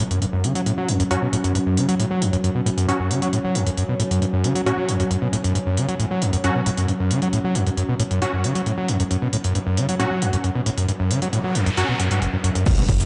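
A dreamy, reverb-soaked mix with a faint mains hum carries this dark, hypnotic stretch of driving peak-time techno, cut from a longer piece. Up front, a screaming, squelchy distorted acid riff with chorus, delay and sidechain pumping rides over a nasal, evolving analog drone, tape-warm electronic drums with smooth hats, crash, ride, shaker and toms, and detuned supersaw stabs that sweep through a low-pass filter. An impact opens the passage, a noise sweep enters at 11.2 seconds, and a punchy layered kick arrives at 12.7 seconds just ahead of a deep, rumbling detuned saw bass at 12.9 seconds.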